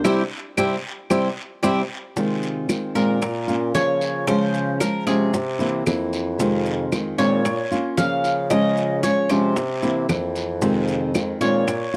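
Cuban son and guajira in F minor at 114 BPM, this sultry passage from a longer piece opens with a band accent and a short drum fill at 1.6 seconds. From 2.2 seconds the double-strung, metallic Cuban tres takes an up-front solo of picked arpeggios over a cycling Fm7, Bbm, Db, C7 progression, while a fingerpicked flamenco guitar with fresh strings accompanies and a clear, softly attacked bassoon with light vibrato carries the bass line. Round, low-tuned bongos and woody claves sit in the background beside raspy, band-limited guiro and grainy, mellow maracas, all captured in a dry, close 1970s-style studio sound with a touch of small-room reverb.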